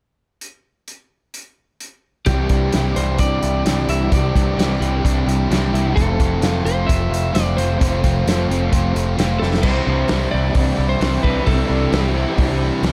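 Blissful and wistful, this shoegaze and dream pop rock excerpt moves at 130 BPM in a straight 4/4 in C major, opening with a loose indie drum kit, up front and small-roomed with a tight kick and rolled-off top, playing alone from 0.4 seconds. At 2.3 seconds the band arrives over Cadd9 and Fmaj7 chords: a growly, punchy picked bass sits up front, and a lightly broken-up lead guitar sings the melody through analog delay. Around it, a biting overdriven riff guitar with reverse reverb, a crunchy riff guitar with subtle chorus and a very quiet lo-fi arpeggiated guitar through a small old amp fill the sound, joined at 9.6 seconds by a double-tracked cranked stack guitar riff in the background, all in light studio reverb.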